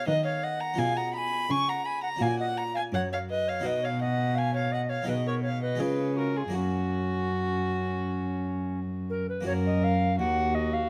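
A dark, period-style cello carries the bass up front, its gut-string tone smooth at the top and touched with light vibrato as it anchors this grave, flowing baroque sonata movement in a straight 4/4. Beside it, a single violin plays a rich, reedy second line, also bowed with gut strings and sitting close to the listener. The tenor recorder takes the melody from a more distant place, its pure wooden tone soft in attack with a gentle chiff. A harpsichord in the Italian style fills out the continuo with an airy, brilliant plucked accompaniment, its octave strings adding sparkle beneath the other voices. All four play together throughout the recording, heard through close, detailed microphones with light reverb, and a new section begins at 9.5 seconds before the fragment is cut off at 10.9 seconds.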